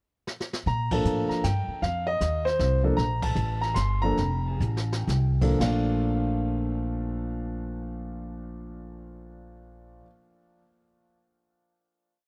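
Sophisticated and swinging, this short jazz piano trio piece moves in a lilting 3/4 in Bb major, with a tempo ranging from 109 to 156 BPM and a swing feel on the eighth notes. A brushed drum fill opens the pickup at 0.3 seconds, and the kit's dark cymbals, medium-tuned snare with brush sweeps, and boomy kick sit in a rolled-off, mid-forward blend. The upright bass walks beneath with a woody, thumpy pizzicato tone from steel strings, placed up front. The concert grand carries song-like motifs over its own syncopated drop-2 comping, its deep bass and open character colored by tape echo. Band accents punctuate the opening bars, the trio slows from 3.0 seconds, and a final Bbmaj7 chord arrives at 5.6 seconds. The whole piece has the close, dry intimacy of a small 1970s-style studio room.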